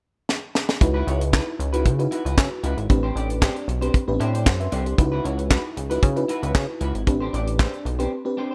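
A tight, acoustic funk drum kit sits up front in this short excerpt of early-eighties boogie funk, its high-tuned snare, tight kick, hi-hat and handclaps ringing in a small, natural room after a brief drum fill that opens at 0.3 seconds. At a straight 115 BPM in 4/4, the groove is funky and danceable, with the harmony moving between C#m11 and Am11 from 0.8 seconds onward. A glossy, retro synth bass, built from pulse and sawtooth waves with pulse-width modulation, a plucky filter and chorus, holds the low end up front. An FM electric piano layered with a soft pad adds lush, dreamy, dark chords with a chorus effect and takes a short fill around 4.2 seconds. Alongside it, a compressed, picked electric guitar sits at the edge of break-up, bathed in lush chorus as it plays its riff. Studio reverb surrounds the mix.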